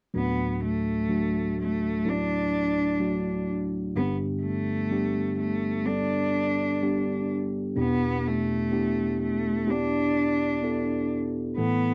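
A single bowed cello carries a warm, smooth, even melody with vibrato and a slapback echo over a clean tine electric piano played through a combo amp, both up front in a dry, close 1970s-style studio sound with light reverb, as this hopeful, tender pop fragment in D major moves at 63 BPM through D, G and Em7, cut from a longer piece.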